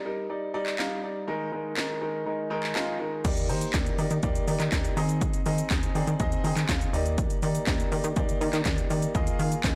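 A blown-out, overdriven mix with light reverb frames this carefree, euphoric dance-pop excerpt at 122 BPM in Eb major, where an open, long-sustaining baby grand piano pumps against the sidechain from the start, a punchy house drum kit with cracking snare, metallic hats, handclaps, shaker and crash enters at 0.7 seconds, and a plucky, wave-folded analog bass joins at the drop at 3.2 seconds, as piano fills at 2.3 and 5.7 seconds decorate the Bb7sus4/Eb and Ab/Eb chords.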